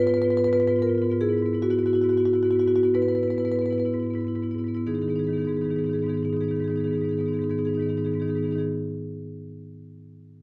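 A warm, up-front marimba played with medium mallets rings through light reverb in this short, hypnotic and reflective excerpt from a contemporary classical piece for solo marimba in G# minor, moving in a rubato 4/4 at 58-78 BPM, slowing down through its opening 4.9 seconds over G#m6 and E/G# chords before settling on G#m for its second section across a range from G#2 to B4.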